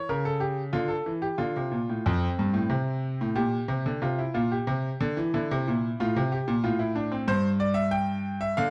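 In a straight 4/4 at 91 BPM, this joyful, lively baroque-style two-part invention in F major unfolds on a solo concert grand piano tuned to A4 = 443 Hz, spanning F2 to G5 across a brief 8.7-second passage cut from a longer piece. The piano sounds brilliant and natural, sitting up front with a deep bass, while the overall production leans dark and warm under a light reverb. An opening on A and Dm gives way at 2.1 s to a new section moving through F, Gm7/Bb, C, F/A and C/G.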